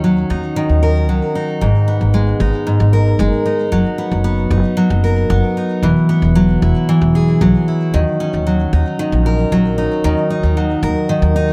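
A picked steel-string acoustic guitar sits up front with a full-bodied dreadnought tone, playing arpeggios through a digital delay across this autumnal, intimate folktronica excerpt at 114 BPM in straight 4/4, tuned slightly below standard pitch. Beneath it, a pizzicato upright bass gives a woody, growly, thumpy low end, both parts running the full 11.5 seconds in a small, moderately reverberant room. The harmony moves from D#m7 through G#madd9, Bmaj7/F# and Eadd9 before returning to D#m7, with a new section arriving at 10.0 seconds just before the cut.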